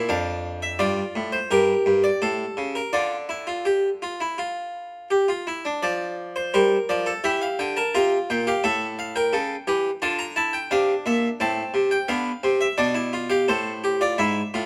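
This is a baroque-style classical fugue in three parts for solo harpsichord, in D minor at a straight 85 BPM in 4/4, and its mood is stately yet joyful. The harpsichord plays throughout, covering a range from F2 to Bb5. It is an Italian-style instrument with two sets of strings, and its plucked tone sounds full and mid-forward. Close, detailed microphones place it up front, with a light touch of reverb around it. The harmony moves through G minor and A7 back to D minor, and a second section begins at 5.8 seconds, passing through E diminished and A7 before settling briefly on A minor. The passage is cut from a longer piece and ends at 14.7 seconds.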